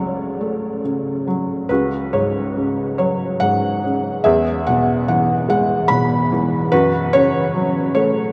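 A felt-muted upright piano plays alone from the opening moment, its soft, mellow tone close and intimate, with a thin felt layer that gives each note a short sustain and a vintage character. This is a brief fragment of a lyrical classical solo piece, dark and wistful in mood, unfolding in a gentle compound metre with a flexible, rubato feel. The piano spans from deep bass notes up into the upper treble, moving through a short, unhurried chord sequence that settles back home by 6.7 seconds. Though the instrument sits up front, it is surrounded by a huge, wet ambient reverb that places it in a vast, echoing space, letting the brief notes bloom into a long, hazy tail. The result is a private, melancholy moment heard as if from within a cavernous hall, cut off at 8.3 seconds.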